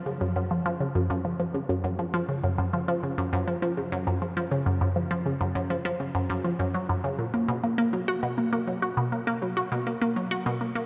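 A lone resonant blip pluck opens at 0.1 s and plays solo in F# major, its squelchy, bright filter tones with a fast attack and short decay sitting up front across a range from F#2 to F#4. Phaser and analog delay colour the pluck, and a huge, wet reverb with an 8.3-second tail gives the sound a vast, echoing space. This cosmic, expansive ambient excerpt moves at 101 BPM in a straight 4/4 and runs for about 10.9 seconds.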